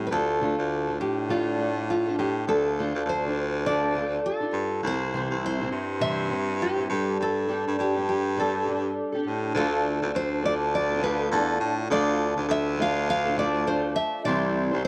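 A lightly swung sixteenth-note lilt in 4/4 carries this sunny, easy-going acoustic pop passage, cut from a longer piece, as it moves through Dm, C and Gsus2 before a second section returns to Dm at 9.5 seconds. A bright, full-bodied nylon-string guitar with fresh strings takes the fingerpicked, classical-style melody, finger squeaks audible, over a dark, woody, double-tracked steel-string guitar fingerpicking the accompaniment up front on old strings. A punchy, pop-style baritone saxophone with vibrato sits forward on the bass line, and a wet spring reverb colours the recording.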